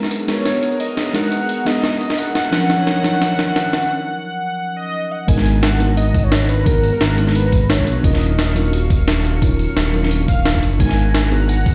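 Soulful and lush, this liquid drum and bass excerpt at 174 BPM in G# minor opens with a velvety sawtooth lead with vibrato carrying the melody over a round, dark FM electric piano with chorus and delay. Beneath them sit a thick, detuned unison pad with vintage sampler grit and sidechain pumping in the background, and a gritty, pitched-up breakbeat kit of hi-hat and high-tuned snare that plays a drum fill before a short break. At 5.3 s the drop arrives as an up-front, smooth sawtooth bass with ring modulation and an overdriven, knocking electronic kick join, while G#m9 and D#m9 alternate beneath a stone room reverb and plate ambience that give the sound a muffled top, as if played on a big sound system in a bare room.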